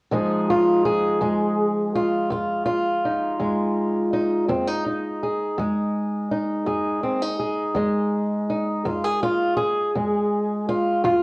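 A slow, straight 12/8 pulse at 55 BPM carries this brooding, mournful acoustic country blues in F minor, a short fragment cut from a longer piece that rests on an Fm7 chord. A fingerpicked old ladder-braced acoustic guitar plays alone and up front from 0.1 to 11.2 seconds, its dark, woody, boxy tone coloured by old strings. The sound is steeped in worn cassette tape with a warbly pitch drift and a moderate studio reverb.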